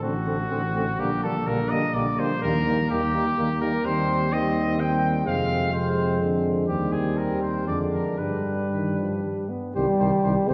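All five brass voices sound together from the opening moment: a clear trumpet carries the melody up front with a light vibrato, a flugelhorn traces a mellow second line in the background, and French horn, trombone and a dark bass trombone fill out the harmony and bass. This classical brass quintet moves in a flexible 3/4 at roughly 114-129 BPM, its rubato giving the phrases a heroic yet grave bearing. The horn's light vibrato and roomy, distant placement contrast with the close-miked trombone's warm tone and the bass trombone's vibrato-touched low foundation. Harmonies pass through D7/A, Gm/Bb and Eb before the music settles into C minor from 3.9 s, then travel through Fm and a diminished chord to G and arrive on Cm at 9.7 s. A wet concert hall reverb places the ensemble further back in the room, and the passage, cut from a longer piece, ends at 10.5 s.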